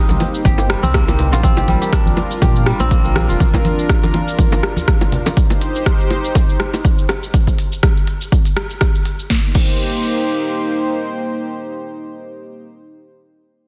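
A dense, heavily limited mix carries this earthy afro house excerpt, where an overdriven, punchy electronic kick sits up front beside an afro-pop drum kit with a sharp snare and smooth hats, tight high-tuned bongos, and soft-handed congas in the background, while a round, deep analog bass pumps beneath a mellow chorused pad and a fingerpicked kora rings out crisp, delayed arpeggios until 5.0 seconds.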